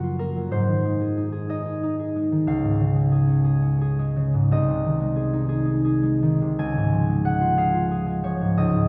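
A gently swaying 6/8 pulse at 60 dotted-quarter beats per minute moves with uneven, rubato timing, giving this short cut from a longer classical piece for solo harp a peaceful, dreamy drift. The concert harp plays alone from start to finish across its 8.9 seconds, spanning a broad range from C2 up to Ab5 in D-flat major. Its thumb-plucked strings sound acoustic and ringing, sitting up front in the mix. The harmony opens on Gbmaj7, then moves through Ab, Db and Ab/C before settling back on Db at 6.6 seconds. A wet scoring-stage reverb with a long 1.9-second decay places the listener further back in the room, wrapping the instrument in a soft, spacious halo.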